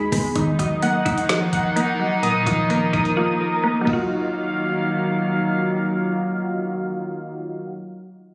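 Brooding and menacing, this half-time trap excerpt in Eb minor moves at 128 BPM, with a woody, round FM synth pluck providing accompaniment beneath warbly, detuned lo-fi synth keys that play arpeggios through chorus and tape echo, while a dark, floating studio string section holds bowed sul tasto chords from 0.4 seconds over an Ebmadd9 to Bbsus4 progression. An electronic trap kit with a knocking kick, woody snare, metallic hats and crash drives the first half, drops out at 3.2 seconds and is gone by 4.0 seconds, leaving the keys, pluck and strings to carry the second section. The whole sits in a lush hall reverb with a phone-in-the-room, club-like, low-passed haze.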